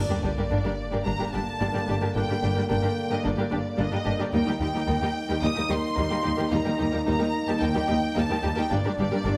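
Heroic and dramatic, this epic orchestral film-score excerpt in G minor moves at 110 BPM in a straight 4/4, opening with a huge, bright sub drop impact that lasts until 2.2 seconds while a warm violin section carries the smooth, vibrato-laden melody over a dark second violin line with portamento, rich violas and cellos, a clear, focused double bass section and softly attacked French horn chords, all set in a moderate scoring-stage reverb as the harmony shifts from Gm to Eb and back.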